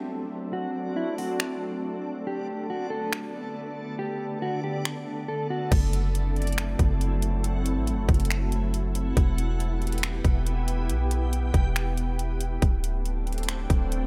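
Up-front trap drums with a hard-clipped kick, metallic hi-hats, finger snaps and crash cymbal drive this melancholic, hazy cloud-rap piece at 139 BPM in a half-time feel, and a deep, boomy 808-style bass enters at 5.7 s after a brief silent gap. Beneath them, a glassy FM pad holds sustained chords through ensemble chorus and reverb, while a reversed, detuned granular texture swells with dreamy brightness and a dark, clean electric guitar plays a fingered melody through a low-pass filter and digital delay until 5.7 s. A filter sweep runs through the opening, and the chords move from D7 and Bm7 to F#m7b5, Em and back to D7 in a lightly reverberant space.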